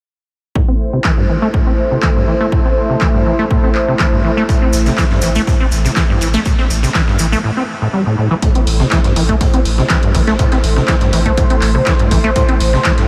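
Acid house in A minor at 122 BPM, this raw, gritty excerpt from a longer piece opens on an Am chord with a squelchy, resonant sawtooth acid bass riff carrying filter sweeps and delay, set over a dry, punchy electronic kick and sustained chords from a detuned analog pad, both bass and pad breathing with sidechain pumping. An analog drum machine adds handclaps, hi-hat and rim click from 1.0 seconds, and at 4.5 seconds a compressed, pitched-up breakbeat sampler-style kit with a high-tuned snare and filtered hats slips into the background alongside distant, grainy maracas, with a round sine sub bass arriving just after. The whole mix is soaked in a huge ambient reverb that gives the gritty groove a dreamy haze.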